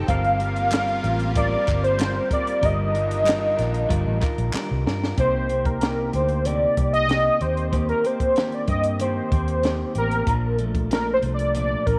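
Indie and bedroom pop with a sunny, dreamy mood, built on a slightly broken-up electric guitar with subtle chorus and warbly pitch drift, a round, foam-muted vintage bass, and a compact cocktail drum kit with a punchy kick and high-tuned snare. A lush, thick chorused pad and crisp group handclaps color the opening, with both gone by 5.2 s, when a drum fill gives way to a soft solo. The velvety, up-front synth lead carries the melody throughout with tremolo, vibrato and analog chorus, all set in light studio reverb.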